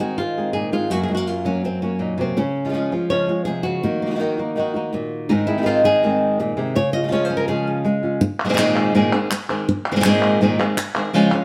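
Two fingerpicked flamenco guitars with fresh strings open up front in a festive, fiery nylon-string solo passage, one carrying the melody and the other playing stabs, until the stabs stop at 8.2 seconds and crisp palmas hand claps join at 8.4 seconds over an Abadd9 chord, all ringing in a moderate stone room as a live band cut from a longer piece.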